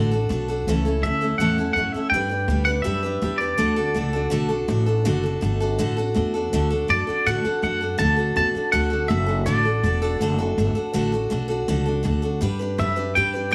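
Rockabilly with a rowdy, upbeat drive, this short cut from a longer piece rides on a full-bodied, up-front dreadnought acoustic guitar and a woody, growly pizzicato upright bass in a small, lightly reverberant room. A twangy, clean electric guitar carries the melody from 1.0 seconds, its compressed, scooped tone shimmering with harmonic tremolo and tape echo. It drops out at 10.2 seconds and returns at 12.8 seconds over the picked chords of the two repeated passages.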